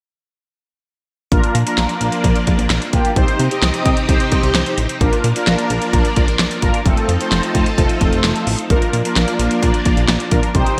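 Bright and nostalgic, this synth-pop excerpt sets a punchy, up-front electronic drum kit with fat snare, metallic hats and handclaps alongside round, brassy synth brass carrying chorus and phaser, shimmering vintage string-machine violins holding sustained chords, and a glossy chorused synth bass with a plucked filter, all bathed in a lush digital hall reverb with a bright 1980s-style sheen.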